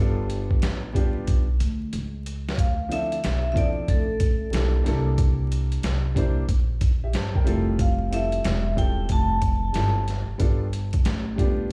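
Played on a big sound system in a bare stone room with vinyl crackle, this cool, smoky jazz-hop cut from a longer hip hop piece swings at 92 BPM in D dorian, as gritty, compressed boom bap drums with a thumpy kick sit up front beside a dark, woody pizzicato upright bass and a smooth, vintage upright piano, while a drum fill at 1.3 seconds leads into a bright, ringing hard-mallet vibraphone melody with tape echo and slow motor vibrato from 2.6 to 10.0 seconds over chords moving from Dm7 through C13 and Fmaj9 to G7.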